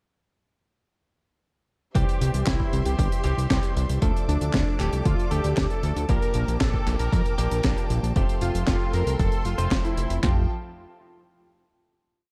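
A clean, direct-recorded electric guitar opens the piece at 1.9 seconds with bright, compressed stabs, held chords with syncopated pushes, set in the background with a vibrato effect. A moment later the full band arrives for a sunny, playful italo disco chorus in straight 4/4: a fat, detuned sawtooth analog bass sits up front, sequencing saturated sixteenth-note lines with a plucky filter, while a punchy electronic house kit drives a four-on-the-floor kick and snare. A tight acoustic funk kit, mid-forward and recorded in a small room, layers a disco machine beat of closed hi-hat, handclaps and a high-tuned snare on top. Over this, a bold, wave-folded unison lead plays a repeating riff melody through lush chorus and tape echo, backed by a rich studio string section bowing smooth, sustained pad chords with light vibrato. The harmony moves from C through Dm and Bb6 to Fadd9, and the parts drop away around 10.4 seconds, leaving a final chord to ring out until 12.3 seconds in a dark, warm small-room ambience.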